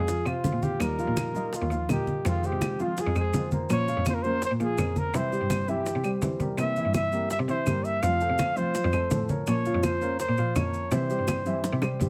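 A moderately reverberant studio sound frames this nostalgic Cuban son and guajira excerpt in F minor at 166 BPM, where a breathy, whispered trumpet with vibrato and plate reverb carries the melody up front over a thumb-plucked nylon-string guitar in the background, a dark baby grand piano playing long-sustained arpeggios, a bright, biting bowed cello holding the bass, and percussion of thick-skinned low-tuned congas, very quiet dry bongos, grainy maracas and woody claves, closing on a drum fill from 10.9 seconds.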